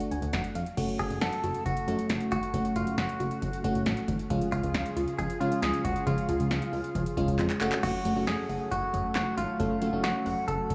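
A glassy FM electric piano fill with a bell-like attack opens this nocturnal, cool synth-pop excerpt at 136 BPM in 4/4. Alongside it, a bright, twangy clean electric guitar carries the melody up front, and an electro analog drum machine drives with a deep kick, punchy snare, metallic hats, handclaps and crash cymbal. A glossy, retro chorused synth bass sits underneath. At 0.8 seconds, a smooth analog pad enters in the background with sustained chords, while a very quiet, round pluck adds dark arpeggios. The harmony in F# harmonic minor moves from D to F#m, then C#, and returns to F#m during a drum fill that begins at 7.4 seconds. The guitar carries subtle chorus, digital delay and shimmer reverb, the electric piano and pad share chorus and shimmer reverb, and the tape-warm drums have a small-room character, with the mix set in a light studio reverb.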